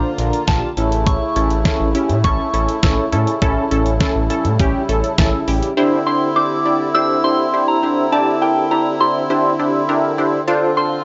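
An overdriven, thumpy 8-bit drum machine with a fat snare drives this cool, nocturnal synth-pop passage alongside a smooth, gliding sawtooth bass, both dropping out by 5.8 seconds while a punchy, detuned polysynth comp with chorus, a reedy, close-miked accordion holding sustained chords, and a pure FM bell melody colored by chorus and phaser carry on through a dry, gritty mix with light reverb.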